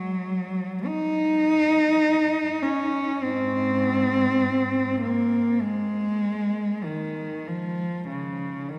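Meditative and yearning, this classical piece for a single bowed cello moves in a free, rubato 4/4 at roughly 42-52 BPM, its rich tone ranging from Ab2 to Eb4 and shaded with vibrato and expressive portamento. The close, up-front cello sits within a wet cathedral reverb with a 4.4 s decay, which places the listener further back in the room. The cello plays alone for the full 8.8 seconds of this passage, cut from a longer work.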